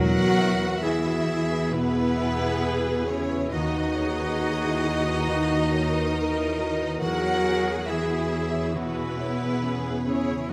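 A tender, moving cinematic film score for orchestra unfolds at a rubato 68 BPM in 4/4, opening with articulate timpani on hard mallets that sound only until 1.2 seconds beneath a smooth, vibrato-rich violin section carrying the melody, joined by an airy concert flute and a softer, more distant second violin line. Underneath, a mellow French horn section holds sustained chords, a dark baby grand piano with audible action noise accompanies in the background, a thumb-plucked harp rings very quietly in arpeggios, and focused double basses with a smooth cello section anchor the bass, while a lush viola section enters at 1.7 seconds. The harmony moves from E through Badd9/D# to C#m7/E, all set in a moderate scoring-stage reverb in this brief cut from a longer piece.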